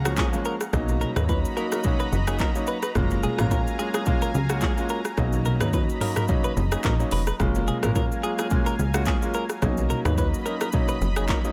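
A dry afrobeats excerpt at 108 BPM with a romantic, breezy mood sways between F#maj9 and Bmaj7 as a punchy, filter-plucked analog bass and an electronic afro-pop kit with deep kick, metallic hats, handclaps, rim clicks, shaker and toms sit up front beside a clear, worn grand piano, while a lush detuned unison pad, a bright, twangy clean electric guitar riff with subtle chorus and delay, and very quiet soft-handed bongos and congas fill in behind.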